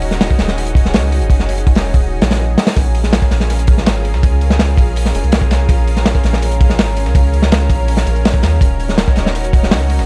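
Raw and atmospheric, this drum and bass excerpt in Bb minor runs at 164 BPM in a straight 4/4, with a crunchy, saturated breakbeat kit up front, its tight kick and medium-tuned snare carrying a rolled-off top, over a deep, round dub sub bass. A lush, detuned unison pad with chorus sustains bright chords moving from Ebm7 to Bbm7 at 2.8 seconds and back to Ebm7 at 8.6 seconds. From 2.8 seconds a very quiet, dusty sampler-style kit adds compressed hi-hat and snare, all set in a small room with a dark production.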